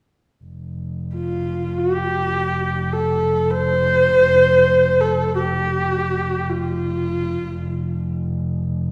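A husky, focused horsehead fiddle, bowed up front by a single player with vibrato and portamento, carries a proud melody between F4 and C5 from 1.2 to 8.1 seconds in this free-time Mongolian folk fragment in F gong mode, tuned to A4 = 436 Hz, over a rich, smooth bowed double bass drone on F1 sounding from 0.4 to 8.9 seconds, the pair placed in a wet recital hall reverb heard from further back in the room that gives the music a vast feel.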